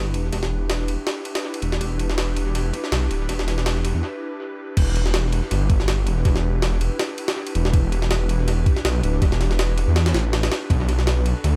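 Drum and bass with jungle roots, dark and atmospheric at 162 BPM in E minor, this excerpt sets a breathy, warbling chorused pad holding sustained chords over a thick, menacing detuned saw bass that sits up front, while a gritty, pitched-up sampler-style jungle kit with a thumpy kick, high-tuned snare, crash and ride runs through a small room and analog delay, building from the start to a break at 4.0 seconds before the drop lands at 4.8 seconds, moving from Em7 to Bm7 at 10.7 seconds in an echo-heavy mix.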